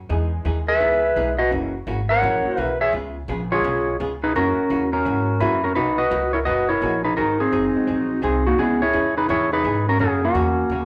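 A swinging eighth-note feel in four drives this down-home country excerpt, set in motion at the very start by a pizzicato upright bass with a dark, woody tone on steel strings. Just after, a clean, compressed hollow-body jazz guitar with a shadowy picked sound joins the accompaniment, along with a very quiet, detuned and jangly vintage honky-tonk upright piano that drops out at 9.6 seconds. At 0.7 seconds a bright, twangy lap steel guitar takes the melody up front, its clean, fingered slide lines ringing out over the band. Alongside it, a growling clarinet plays a jazz-style second line, mellow yet raspy and gritty, with vibrato and scooped notes. The group sounds as if playing live together in one large studio room with a moderate reverb, moving from an opening passage built on Emaj7 and dominant chords into a second section at 5.8 seconds that starts on Bmaj7 and closes on F#.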